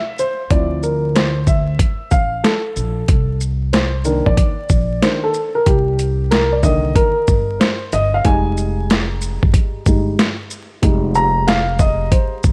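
A dark, mellow upright piano opens at 0.0 s and carries a solo over Dm9, Cm9 and Fm9 chords in this nocturnal, smoky jazz-hop excerpt at 93 BPM with a swung sixteenth feel. A dusty, sampler-style soul drum kit enters at 0.2 s, compressed and overdriven, with gritty hi-hat, shaker, a medium-tuned snare and a thumpy kick sitting up front. A woody pizzicato upright bass joins at 0.5 s, all in a small room with light reverb and vinyl crackle.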